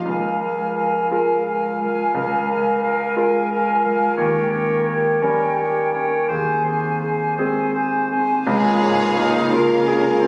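Uplifting and moving, this rubato cinematic film-score excerpt in 6/8 at 54-60 BPM opens with a bright, brilliant concert grand piano up front and ringing thumb-plucked harp arpeggios under airy flutes, a clear oboe and a distant, mellow clarinet weaving second lines, then at 8.5 s a pure alto flute and lush violins take the melody over mellow French horn chords, a second violin line, quiet cellos and double basses, and violas entering at 9.5 s, all bathed in a wet scoring-stage reverb.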